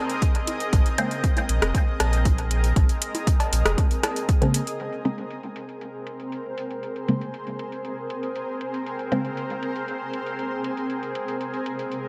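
A cloudy, evolving granular pad sustains a Bb7sus2 chord up front through this meditative, hypnotic dub techno excerpt, pumping against an overdriven electronic kick and a clean sine sub bass, while a deep house kit with metallic hats and rim clicks trails dub echo, tape-warm bongos and cowbell sit in the background, and a nasal, phased dub chord stab returns at 4.4 seconds as the kick drops out, then moves under a filter sweep from 4.8 seconds.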